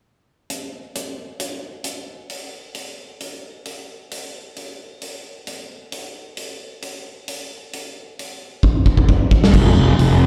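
In a straight 4/4 pulse, this dark, cathartic quiet-loud alternative rock fragment, heard live through a venue's PA, opens on a big, up-front acoustic rock kit with a punchy kick, medium-tuned snare, hi-hat and bright crash cymbals, moves into a drum fill at 8.6 seconds, and at 9.5 seconds brings in a growly, overdriven fuzz bass that sits low and forward just as the cut ends.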